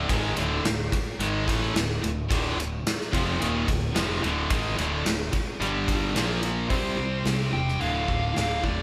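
Three picked, bright rhythm guitars, two overdriven and one double-tracked with high-gain distortion, sit in the background of this menacing, driving hard rock cut at 109 BPM in D minor, riffing over a warm, fuzz-soaked fingered bass while a gated 80s drum kit with a punchy kick and medium-tuned snare sits up front in a stone-room sound. The band plays live in one large studio room with moderate reverb, moving from Dm through G5 and Bb5 to C and back to Dm. At 6.7 s a dark, smooth overdriven lead guitar enters with a high melody above the riff.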